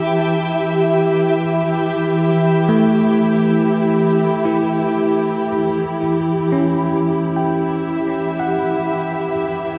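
Reflective and serene, this ambient fragment from a longer piece drifts in a straight 4/4 over a single Emadd9 chord. A dark, woody studio string section sits up front, holding lush sustained chords with vibrato and a smooth top. A bell-like tine electric piano traces clean, direct arpeggios through a delay, while a very quiet bowed-like drone hums beneath on E3 with a tense, nasal, detuned edge. A twinkling granular texture adds sparkling octave-up shimmer until 5.8 s, when the music moves into its second section. The mix is soaked in a wet hall reverb with a 2.9 s decay, giving the recording a dreamy atmosphere.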